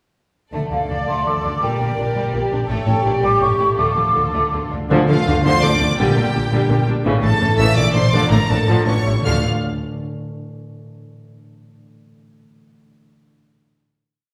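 In a rubato 3/4 at 166 BPM, this complete, stormy and urgent classical movement in D minor for symphony orchestra sets lush, vibrato-laden violins on the melody, with a second violin line doubling the tune at the octave, over a smooth viola counter-melody and driving ostinato, an even cello bass ostinato and a focused double bass section doubling the bass line; meanwhile a ringing, thumb-plucked concert harp spreads broken chords in the background, a hollow, airy flute group sits up front from 0.7 seconds, and very quiet timpani single strokes on D arrive at 4.9 seconds, the orchestra set in a reverberant hall before settling on a final D minor chord at 9.2 seconds.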